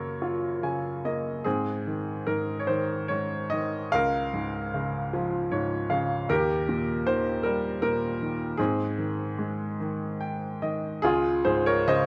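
A bright, up-front baby grand piano plays alone in this tender, lyrical classical solo in A-flat major, unfolding in a slow, rubato 6/8 at about 47-54 BPM in dotted quarters, adding brief fills as the chords move from Gbmaj7 through Ab, Db6 and Eb before a new section opens on Db at 11.0 seconds, captured by close, detailed microphones with light reverb in a short passage cut from a longer piece.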